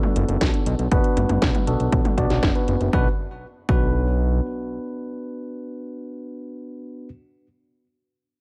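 A bell-like, clean tine electric piano plays delayed stabs through the full 7.1 seconds of this nostalgic, danceable italo disco excerpt in B minor at 119 BPM, alongside a house kit with cracking snare, metallic hats and toms that plays from the start and stops at 2.9 s, joined at 0.2 s by a fat, nasal, detuned analog bass and at 0.4 s by a punchy overdriven electronic kick, all in a dry mix.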